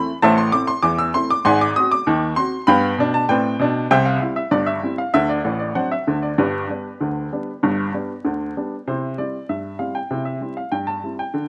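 Playful and cheerful, this short excerpt of ragtime piano moves at 97 BPM in a straight 2/4, set in C major with the tuning sitting slightly high at A4 = 444 Hz. A lone upright piano with a woody, present tone and short sustain sits up front and spans a broad range from G1 to E6. Its chords run from Am through Ab7, G7, C, D7 and G before a new section lands on C at 8.9 seconds, all heard dry in an open-air setting with vinyl crackle.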